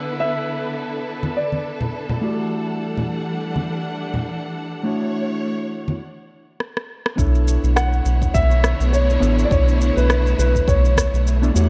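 Dark, lightly reverberant digital ambience frames this smooth sunset chillout excerpt in B minor at 103 BPM with a swung 16th feel, where a mellow, clean, fingered electric guitar with a filter sweep and tape echo and a bowed studio string section with vibrato and portamento hold Bm11, Em11 and Dmaj9 throughout, a boxy grand piano with delay carries the melody in brief phrases, soft-handed, saturated congas give way to a break before an electronic rim click and shaker arrive at 6.6 seconds, and from 7.2 seconds a round, up-front sawtooth-and-sine analog bass joins a deep electronic kick sitting in the background.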